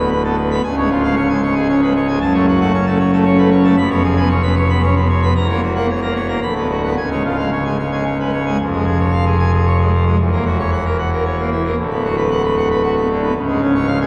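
Dramatic and stormy, this classical organ toccata excerpt moves at 114 BPM in 3/4, with a solo pipe organ on full organ playing alone from 0.0 to 14.1 s across a range from C#1 to B5. The majestic, brilliant mixtures and romantic voicing sit up front, while a cathedral reverb with a 5.0-second decay lends a distant, resonant grandeur. The passage states its opening section twice, cycling through chords such as Bm/D, C#, F#m and F#7/E before coming to rest on C#.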